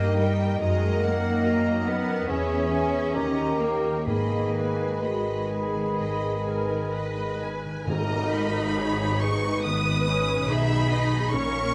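Moving in a rubato 4/4 at roughly 62-73 BPM, this slow romantic movement for symphony orchestra in G# minor carries an elegiac, melancholic mood through a short passage cut from a longer piece. A lush violin section sings the melody high above a second violin line, both bowed with vibrato, while violas with soft attack and expressive portamento fill the accompaniment. Rich, distant cellos and close, smooth double basses anchor the bass, and a mellow concert harp rings out thumb-plucked arpeggios in the background throughout. For the first 7.5 seconds, a clear solo clarinet and an airy flute section add second lines, a dark bassoon supplies accompaniment, and a French horn section holds sustained chords in the background. At 4.1 seconds the harmony settles on G# minor as very quiet timpani with medium mallets and dark cymbal swells with tam-tam enter, the timpani stopping at 9.2 seconds, and a full-ensemble accent lands near 7.9 seconds. 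A moderate recital hall reverb gives the orchestra a natural sense of space.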